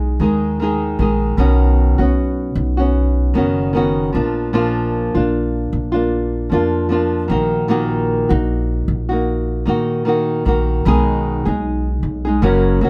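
Sunny and carefree, this short acoustic pop passage moves with a relaxed, lightly swung sixteenth-note feel in 4/4. A fingerpicked nylon-string guitar carries the accompaniment throughout its 12.9 seconds, its tone dark and small yet placed up front. Beside it, a pizzicato upright bass on steel strings plays the low line, woody and growly with a thumpy attack, also sitting close to the listener. The chords drift from G#5 through Badd9 and A# to D#m/A#, settling on G#m/B near 10.8 seconds. The two players sound like they share one room, wrapped in a moderate studio reverb.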